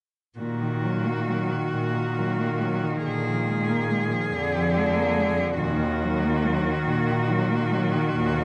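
This is a classical, lyrical excerpt for a cello ensemble in Eb minor, solemn and yearning, moving slowly at 47 BPM in a rubato 6/8. Four bowed cellos, each a single player with vibrato, sound together from 0.4 to 8.4 seconds. Up front, the melody cello sings between Gb4 and Ab4 with a smooth, even, rich tone. A second line, warm, distant and in the background, glides with portamento and expressive shaping between Bb2 and Bb3. Alongside them, a distant accompanying cello holds smooth and even between D3 and Eb3, while a close, up-front bass cello carries expressive portamento between Eb2 and Bb2. The harmony passes from Ebm/Bb through Bb7 at 3.0 seconds to Ebm at 5.6 seconds, all bathed in a moderate recital hall reverb.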